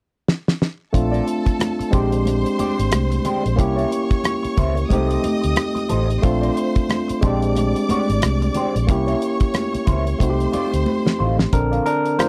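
Warm and smooth, this short cut of lush 1970s-style soul sits at 91 BPM in Bb major with a swung sixteenth feel, opening on a drum fill from 0.3 seconds before the band enters at 0.9 seconds over rich chords such as Bbmaj9, Bb13 and C7b9. Damped 70s drums with a fat snare and tight kick sit up front alongside a dark, round, foam-muted electric bass with tube saturation and a barky tine electric piano, lightly overdriven, while a picked, slightly broken-up electric guitar through a small old amp plays a wah-inflected riff. A clear, focused violin section with vibrato carries a second line above, ringing high-tuned congas join in the background at 1.6 seconds, and the whole is captured as a dry, close studio recording with little reverb.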